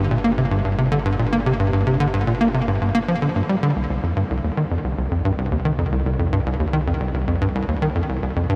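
Expansive and hypnotic, this short ambient space-music passage, cut from a longer piece, moves at 111 BPM in a straight 4/4, opening in G minor before shifting to C minor at 3.8 s, where the harmony drops away to leave the parts unaccompanied by chords. Up front, a tight sequencer bass drives a punchy riff between C2 and Bb3, its saturated sawtooth and square-wave tones shaped by a filter pluck with a fast attack and decaying notes, lightly touched by subtle chorus and delay. Beneath it, an analog drone holds low between G1 and C2, a warm, evolving, dark and detuned blend of sawtooth and pulse waves with pulse-width modulation. This drone sits in the background with a slow attack, sustained tone, long release and chorus. Both parts play throughout the full 8.6 s, and the whole dreamy mix is soaked in a huge reverb with a 7.5-second decay.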